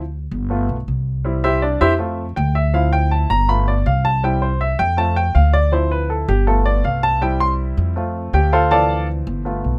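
A straight, danceable salsa groove in 4/4 opens with a woody, thumpy pizzicato upright bass on gut strings at 0.0 seconds, and at 0.5 seconds a clear, intimate grand piano with audible action noise enters to take a polished solo over a sunny cycle of G7, C, F and Dm7, both instruments up front in a rough home demo mix with light reverb in this short section cut from a longer piece.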